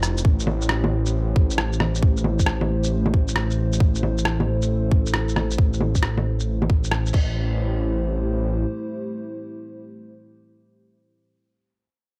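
A dry, close-sounding fragment of ghostly, nocturnal future garage at 135 BPM in A minor with a swung 16th feel, where a tight, up-front electronic kick plays until 7.3 seconds over a muffled, pitched-down sampler-style kit of bongos, cabasa, crash cymbal, rim click and shaker, a menacing, saturated detuned saw bass with sidechain pumping and a filter sweep holds low sustained notes, and a moody, ring-modulated analog pad with chorus and sidechain pumping sustains an Am7 chord until 11.3 seconds.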